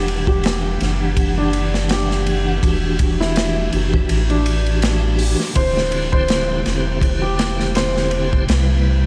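A felt-muted upright piano opens this smoky, cinematic trip hop excerpt in E minor at 82 BPM, its intimate, mellow melody touched with tape echo and audible action noise, alongside a piping, lightly overdriven tonewheel organ with key click, chorus vibrato and a slow rotary speaker, and a deep, round dub sub bass with tube saturation sitting up front. A crunchy breakbeat kit with a tight kick, medium-tuned snare, hi-hat and dark ride cymbal enters at 0.1 s, gritty and saturated with a rolled-off top, swinging the 16ths over chords moving from Em9 to D9sus4 and Cmaj7. The whole dreamy mix is soaked in cathedral reverb and vinyl crackle, with the piano falling away at 8.4 s before the organ and bass close at 9.1 s.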